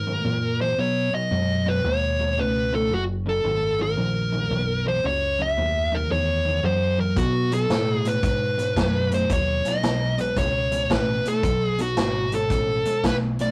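A laid-back, swaggering electric blues shuffle at 113 BPM opens with a dark, smooth, up-front lead guitar carrying the overdriven, picked melody over a crunchy rhythm guitar riff and a round, fingered electric bass through chords of F#9, B9, B7sus2 and B5, before a punchy, mid-forward vintage drum kit of hi-hat, kick and snare enters at 7.2 seconds, all captured in a rough rehearsal-room sound with saturation and moderate reverb in this fragment cut from a longer piece.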